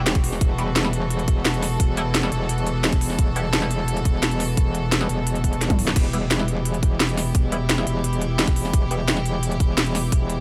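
Dry, up-front production carries this short, dark and mechanical technical drum and bass cut, where a tight, tape-warmed electronic kick and a layered kit with cracking snare, crisp hats, crash and toms (with a fill at 5.6 seconds) drive over a metallic, saturated FM wobble bass with chorus and sidechain pumping, while a rich, floating bowed string section holds sustained chords and a nasal, band-passed sawtooth chord stab with phaser, analog chorus and delay sits in the background until 9.0 seconds.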